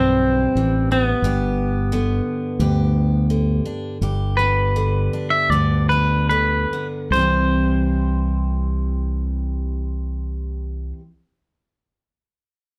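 A twangy, scooped electric guitar carries the melody from the start, set against a full-bodied picked dreadnought acoustic and a round, dark fingered electric bass in this sunny, heartfelt country excerpt in C major. Moving in a straight 4/4 at 71-89 BPM over chords that shift from C to G and back to C at 7.1 seconds, the tempo slows between 1.2 and 7.1 seconds. The clean lead and the direct, amped bass sit up front, while moderate studio reverb and a listening position further back in the room frame the whole performance.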